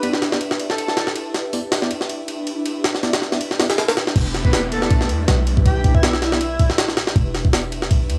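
A dry, gritty hardware recording with transformer saturation and a touch of reverb frames this frenetic yet nostalgic jungle-flavoured drum and bass fragment at 160 BPM in E minor, opening on an Em7 chord. A pitched-up, compressed sampler-style kit sits up front with a thumpy kick and high-tuned snare, while an ethereal pad carrying ensemble chorus and phaser gets a filter sweep, a mellow tine electric piano adds clean stabs with dub echo in the background, and a soft, dreamy lead with vibrato drifts in and out of the texture. At 4.2 seconds the drop arrives as a deep, boomy 808-style bass enters alongside a faint electronic downlifter, and the lead returns at 4.4 seconds.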